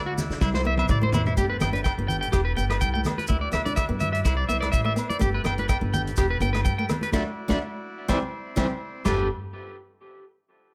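A sunny, carefree highlife guitar band groove in G major moves at 125 BPM in 4/4, with a light 16th-note swing, in a short cut from a longer piece. Up front, a twangy, slightly broken-up electric guitar picks arpeggios through analog delay and plate reverb, while a bright, small-sounding nylon-string guitar fingerpicks accompaniment from 0.7 seconds. A woody, growly pizzicato upright bass anchors the low end, and a buzzy vintage combo organ holds sustained chords in the background. A soul drum kit with dark cymbals, a tight kick and a rolled-off top sits distant in a roomy booth, playing a drum fill from 0.4 to 1.4 seconds, as high-tuned ringing congas, grainy maracas and agogo bells sit further back. The chords cycle through Cadd9, Gadd9 and Dadd9, and the band hits an accent from 7.1 to 9.1 seconds before the progression returns to Gadd9.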